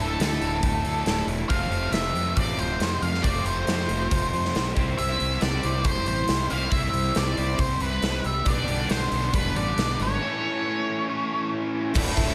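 A dark, wah-inflected octave-fuzz lead guitar carries the melody from the very start of this brooding, swaggering classic rock fragment at 138 BPM, over background riffs from a compressed distorted guitar and an overdriven guitar with spring reverb, a fuzz fingered bass, and a big rock drum kit that enters at 0.2 s with a punchy kick and bright cymbals, as the chords move from Dsus2 through F, C and G/B to A before a boxy picked acoustic archtop and a double-tracked crunchy overdriven guitar slip in at 11.9 s, set in a small room with light reverb.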